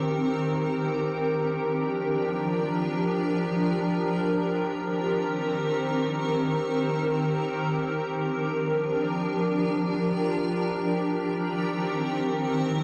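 Dry, gritty cassette-tape sound with light reverb frames this hazy, spacious hip hop fragment, cut from a longer piece, in free time and G minor, where a lone granular cloud pad sits up front, blurred and evolving in its own reverb, sustaining sine tones between Eb3 and Bb4 with slow attacks, long releases and a moving notch as the harmony shifts between Cm7 and Gm7 across its 12.8 seconds.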